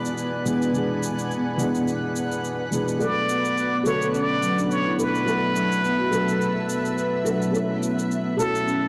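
A lightly swung 4/4 groove at 106 BPM carries this earthy, warm organic downtempo excerpt, where an overdriven electronic shaker ticks under a dark, boxy felt-muted upright piano with a filter sweep and digital delay, a blurred granular cloud pad and a glassy, drifting glass-harmonics texture, before a bright plunger-muted trumpet takes the jazz-style melody at 3.0 seconds and a round, soft-mallet marimba adds arpeggios at 3.3 seconds, all over chords of E7/B, D6/B and F#m7/B in a lush hall with a blown-out, overdriven recording sound.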